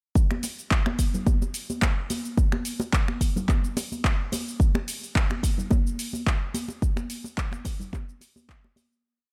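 A four-on-the-floor pulse at 108 BPM in 4/4 drives this short nu-disco piece, with a light 54% swing on the sixteenths giving it a sleek, sensual sway. The electronic kick sits up front, punchy and layered, from 0.2 s, carrying a touch of studio reverb. Around it, the house drum kit supplies a produced disco backbeat of handclaps, finger snaps, cabasa and open hi-hat, set lower in the mix and also softened by studio reverb. Acoustic congas, ringing and high-tuned, add close, dry disco percussion played with soft hands, moving across muted, high and low tones. The whole piece sits in a digital ambience as one continuous drop, and it begins fading out at 6.1 s.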